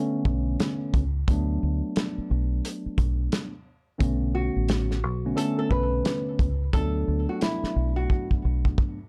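A swung 88 BPM boom-bap groove in 4/4 sets a gritty, dark hip-hop mood. From 0.3 seconds, a saturated soul drum kit with a tight kick and rolled-off top joins a round, punchy fingered electric bass beneath a mellow tine electric piano, which is colored by cassette tape and filtering over Bm9 and D6 chords. At 4.3 seconds a dark, fingerpicked flamenco guitar carries the melody through filters and delay, and a drum fill at 8.1 seconds closes this cut from a longer piece, all within a dark production with light reverb.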